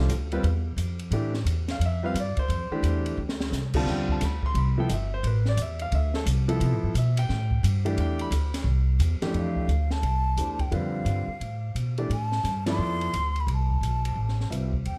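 A breathy, tongued concert flute with vibrato enters at 9.4 s to carry the melody in this spiritual, open modal jazz excerpt, floating over an intimate grand piano with audible action noise and long sustain, a woody pizzicato upright bass placed up front, and a swinging acoustic drum kit with a high-tuned snare and boomy kick that plays a brief fill at 3.2 s before the band hits an accent at 12.6 s, all under light reverb.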